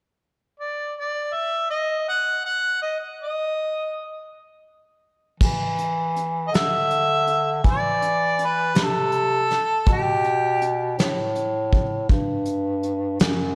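A lone harmonica opens this slow blues fragment at 0.6 s, its overdriven tone carrying scooped notes and a light vibrato that sound distant and roomy, setting a smoky, mournful mood in a straight 12/8. At 5.4 s the harmony settles onto an Em7 as a breathy bass clarinet and a vintage brush drum kit enter together. The bass clarinet, clear and jazz-inflected with its own vibrato, holds down the low end close to the listener. Brushes on the kit bring a fat snare, a punchy kick, dark cymbals on hi-hat and crash, and a rolled-off top. The harmonica's line ends at 10.7 s while bass clarinet and drums carry on briefly, all set in a scoring-stage reverb that gives the small group a big arena sound.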